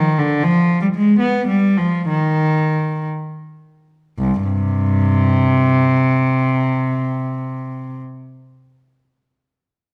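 In a flowing 6/8 with free rubato, somewhere between 52 and 87 BPM in dotted quarters, this solemn baroque-style suite movement in C minor, tuned to A4 = 439 Hz, slows through its opening phrase before a new passage begins at 4.2 seconds. A single bowed cello plays unaccompanied from 0.0 to 8.0 seconds, ranging from C2 to B3, its rich, reedy gut-string tone heard close and up front in period style. A wet recital-hall reverb and a dark production surround this short cut from a longer piece.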